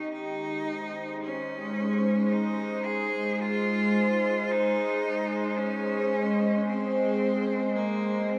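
A peaceful, warm ambient piece in Ab major drifts along at a slow 55 BPM in straight 4/4, cut from a longer work and resting on a single Ab chord. An evolving wavetable pad holds sustained chords from start to finish, its morphing unison triangle tone rising on a slow attack and trailing off with a long release, colored by chorus, phaser and its own built-in reverb. Alongside it, a single bowed cello carries the melody between Bb3 and Ab4, its bright, biting, intense tone shaped by vibrato and echoed by delay. Both parts sit up front in the mix, though the cello also takes on a distant quality and sits a little quieter than the pad. The whole 8.4-second passage is bathed in a huge, wet ambient reverb with an 8.1-second decay, giving it a vast, floating space.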